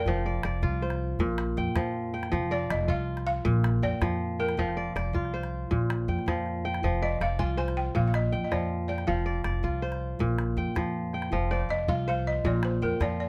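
Bright, ringing kora arpeggios sit up front in this hypnotic, flowing West African string and xylophone piece, fingerpicked with a crisp attack across a span from Bb2 to G5. Alongside them a woody, dry, buzzing balafon played with rubber mallets carries the airy melody between Bb4 and Ab5. An acoustic upright bass plucked pizzicato on steel strings gives a dark, woody low end from F1 to F2, while a small calabash adds percussion with a small-room character from 0.1 to 13.1 seconds. The music moves in a straight 12/8 at 107 beats per minute, counted in dotted quarters and tuned to A4 = 437 Hz, with the chords alternating between F5 and Bb5 roughly every second, a plain Bb taking the Bb5's place twice. Close, detailed microphones and little reverb keep the sound intimate in this 13.3-second section cut from a longer piece.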